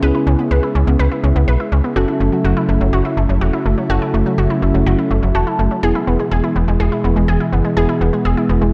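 A snappy, slap-like FM bass sits up front in this short pop excerpt, its metallic, digital attack decaying beneath a nocturnal, melancholic mood at 124 BPM in F# minor. A thick, warbling pad holds vintage-sounding sustained chords with a slow attack and long release, thickened by chorus. A bright, punchy unison pluck spins detuned, wave-folded arpeggios through digital delay and shimmer reverb, and a clean tine electric piano adds accompaniment coloured by lush chorus and its own shimmer reverb. The harmony moves from C#m7 to F#m7 at 2.0 seconds, and the electric piano steps forward with a brief fill at 5.1 seconds just before the chords settle on E at 5.8 seconds. The dark production places the parts in a small room with moderate digital reverb.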